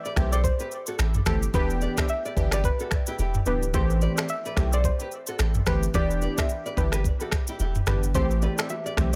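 A soft, nasal pluck opens this hypnotic, sultry afrobeats excerpt in E minor at 109 BPM, carrying the melody with chorus and dub echo over a small, fingerpicked nylon-string guitar riff that also trails dub echo. An up-front electronic drum kit with knocking kick, rim clicks, finger snaps, shaker and toms rides a swung 16th feel beside a deep, punchy sine sub bass with a pitch-drop attack, while detuned sawtooth analog keys, treated with chorus, phaser and dub echo, move between Am7 and Em7. Bright, very quiet congas and bongos slip in at 8.2 seconds, and the dry, echo-heavy mix keeps the groove close and intimate.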